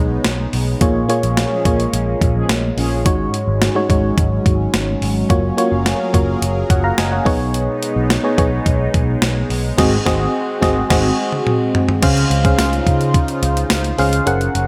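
Romantic and uplifting, this 1980s-style pop excerpt moves at 107 BPM in Db major, with an up-front FM electric piano carrying warbling tremolo chords over a growly, punchy picked electric bass and a clean 12-bit digital drum machine whose thumpy kick, snare, hi-hat, tambourine, toms and crash enter at 0.2 s. A swirling, detuned analog pad sustains underneath through phaser and chorus, while dark, round synth brass stabs sit in the background at 1.5 s and again at 9.8 s. The band hits accents together, a drum fill arrives just before the chords settle on Dbmaj7 at 12.0 s, and light reverb frames the whole.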